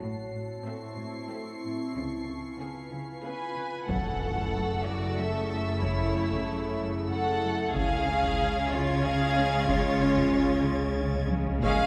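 A glassy FM pad with a slow attack, chorus and its own reverb holds chords from the start alongside very quiet cellos playing a riff, a distant second cello section and a lush double bass section on the low line, and a high, close violin texture, with warm violins taking the melody, a second violin line and background violas joining at 0.7 seconds. This uneasy, ominous suspense cue at 93 BPM in 3/4 settles into F# minor at 3.9 seconds, when a huge, bright impact hits in the background, a very quiet, mellow French horn section begins sustaining chords, and a compressed, saturated taiko ensemble struck with heavy sticks enters, later playing a short fill near the end. The bowed strings sing with vibrato in a wet concert-hall reverb, and the passage is cut from a longer piece.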